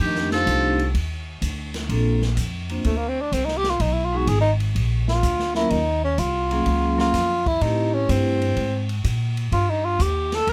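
A relaxed swing feel at 126 BPM in 4/4, with eighth notes swung at 68%, carries this short fragment of small-group swing and bop in Bb major, cut from a longer piece. A buzzy, thin trumpet with a metal mute states the melody with light vibrato and a smooth top, then drops out at 0.9 seconds. At 1.9 seconds the breathy tenor saxophone takes a whispered, intimate solo over chords moving from Bbmaj7 through Ebm11 and Am9 to a closing G7(no3). Behind it, the vibraphone rings with an airy, metallic shimmer and slow motor vibrato until 8.6 seconds. A pizzicato upright bass sits up front, woody and growly, while the open jazz drum kit stays low in the mix, with dark cymbals, a medium-tuned snare and a boomy kick. The close, detailed recording has little reverb, giving the group a dry, intimate studio sound.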